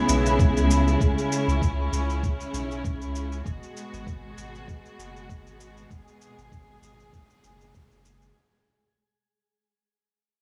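A lightly swung sixteenth-note groove in 4/4 drives this short, mystical and meditative slice of organic downtempo, anchored by a gritty, thumpy electronic kick with a tape-warm, sampler-style character, alongside a compressed cabasa in a small room. Beneath them, a round, deep analog bass with a sine-like, dark tone sits up front and pumps under sidechain compression. A clear, biting string section with an earthy studio sound holds sustained bowed chords with light vibrato, moving from C#m7 to G#m7 at 3.5 seconds and pulsing with the same sidechain pumping. In the background, a twinkling granular texture adds sparkling, octave-up FM shimmer with slow attacks, long releases and its own reverb. The overall sound is dry and gritty, a hardware-style recording that fades out across its full 8.4 seconds, cut from a longer piece.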